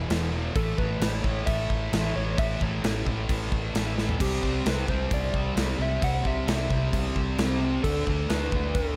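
Shoegaze and dream pop rock at 132 BPM in a straight 4/4, this dreamy, hazy excerpt is driven by a thick, double-tracked fuzz guitar riff with lush chorus, set up front beside a big acoustic drum kit with a punchy kick, bright cymbals and a drum fill at 4.0 seconds. A dark, round, foam-muted vintage electric bass sits underneath, while from 0.6 seconds a soft, warbling FM synth lead with chorus, tremolo and slapback echo adds a gentle keys-like melody. The chords move through E5, A, C and D5, all in a light small-room reverb.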